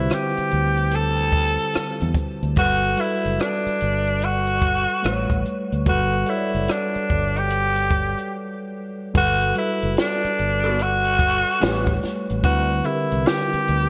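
A relaxed 73 BPM groove in 4/4, swung on the sixteenths, comes from a round, dark fretless bass alongside a compact cocktail drum kit with a punchy kick, high-tuned snare, rim click and hi-hat under gated reverb. Together they anchor this smooth R&B and neo-soul piece in G major, where a raspy, gritty tenor saxophone with vibrato carries the melody up front over a mellow tine electric piano, a short break arrives at 8.3 seconds, and a slightly broken-up, lo-fi electric guitar with lush chorus slips in quietly in the background from 10.6 to 11.9 seconds, set in a bright 1980s-style digital production with light studio reverb.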